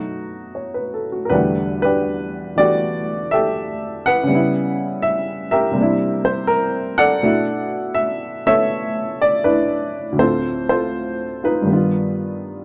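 Playful and relaxed, this short solo jazz fragment cut from a longer piece features a woody, slightly detuned upright piano sitting up front with short sustain, swinging loosely with a rubato feel through rich extended chords like Em11, C13 and Gaug7 over light reverb and a dark production.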